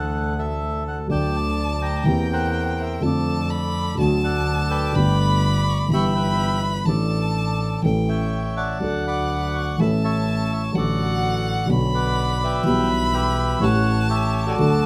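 A reedy bandoneon carries the melody from the start over a dark, mellow grand piano that sits up front with deep bass and short sustain, while a single bowed double bass adds a clear, earthy low line in this playful, passionate tango excerpt in D major. At 1.1 seconds a bright bowed violin enters with an intense, vibrato-laden second line high above. The rubato feel hovers around 124 BPM in 4/4, and the rough home demo mix places the parts in moderate studio reverb, with the bandoneon sounding boxy as if in a small room.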